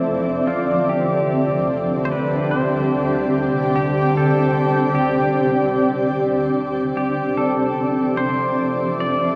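Serene and spacious, this short ambient excerpt at 74 BPM opens on a bright, blurred granular cloud pad sitting up front with slow-attack sustained chords under shimmer reverb, moving from Gsus4/D to Dm9 at 6.6 seconds, while a clean, twangy electric pedal steel guitar enters at 0.5 seconds with a fingerpicked slide melody in volume swells, trailed by shimmer reverb and tape echo, the whole bathed in a wet cathedral reverb and worn cassette tape with warbly pitch drift.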